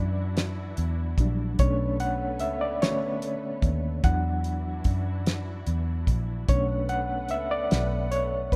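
A dry, rough home-demo sound frames this sultry, late-night slow six-eight R&B excerpt in B minor at 49 BPM, where a gritty, overdriven reed electric piano with fast tremolo takes the lead through a combo amp over chords moving from Em9 to Bm9 and Esus2, supported by a round, foam-muted fingered electric bass, veiled con sordino strings sitting distant in the background, and a cloth-damped, thuddy drum kit with a fat snare and tight kick of hi-hat, kick and snare that enters at 0.4 seconds.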